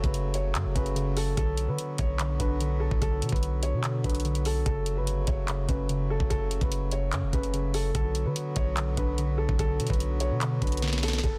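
Trap-style hip hop at 146 BPM in a half-time feel, this menacing, hard-hitting excerpt moves between F#m and Bm. Up front, a knocking, tape-tinged trap kit of kick, sharp snare, bright hi-hats and handclaps drives the groove, while a deep, sine-like 808-style bass sits just as loud, its long mellow notes starting with a fast attack and decaying. A soft, felt-muted upright piano carries an intimate melody in a high register, its natural tone softened by a low-pass filter and echoed with delay. Beneath it, warbling lo-fi synth keys built from detuned square, sawtooth and triangle waves with a sub octave and ring modulation add a dark, nostalgic accompaniment through chorus and a low-pass filter, and a reedy, breathing, close-miked harmonium holds full sustained chords. A drum fill arrives at 10.8 seconds, and a faint electronic downlifter slips in at 11.2 seconds as the excerpt cuts off in a dry, dense, heavily limited modern master.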